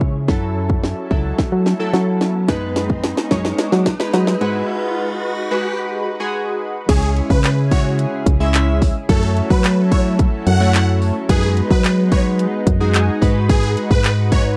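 A punchy house drum kit sits up front in this energetic, confident dance-pop cut, its layered electronic hits pairing a punchy kick and cracking snare with handclaps, hi-hat and crash cymbal, all carrying a tape-warm sheen from being re-recorded in a small room. Underneath, a solid FM bass adds a round, dark, digital weight with fast-attack, decaying notes, and it pumps with sidechain compression along with the glossy, chorused retro synth keys and the lush, airy unison pad that sits in the background. The opening build-up runs a drum fill and filter sweep while a riser climbs in the background from 0.8 seconds, leading into a brief break. At 6.9 seconds the drop lands and huge supersaw chords enter as the melody, bright and detuned, colored by a phaser and slapback echo. The harmony cycles through minor-seventh and sixth chords over a dry, close, 1970s-style studio sound with little reverb.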